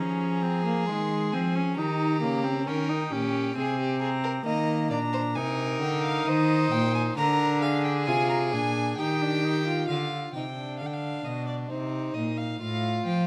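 A serious, driving baroque-style fugue for string quartet opens with all four bowed parts together at 66 BPM in 3/4: a lightly vibrato first violin carries the melody with a smooth, nasal top, a close, full-bodied second violin traces the inner line, an airy-bowed viola accompanies, and an up-front cello anchors the bass, all with period-style gut-string colour. The viola drops out at 9.9 seconds as the harmony turns toward a G7 and C minor, leaving the violins and cello to carry this fragment of a longer piece to 13.3 seconds. A moderate recital-hall reverb surrounds the players, and vinyl crackle runs through the recording.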